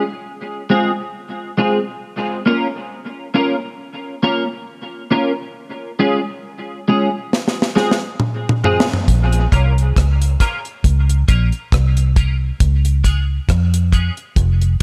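A clean electric guitar opens this dub reggae excerpt alone, its picked, twangy tone compressed and colored by analog chorus, tape echo and a high-pass filter, sitting up front over a slow, swung four-beat pulse. The guitar accompaniment moves through Fm, Bbm and Db in a spacious, hypnotic cycle, and a filter sweep begins working on it at 5.6 seconds. At 7.3 seconds a deep reggae drum kit arrives with a fill, its dry, acoustic sound built on a high-tuned snare, tight kick, rim clicks, hi-hat and toms. A vintage muted fingered electric bass joins at 9.1 seconds, dark, round and punchy through its amp, carrying the low end as the loudest part. A light small-room reverb gives the close, forward parts a touch of air as the piece is cut off mid-flow.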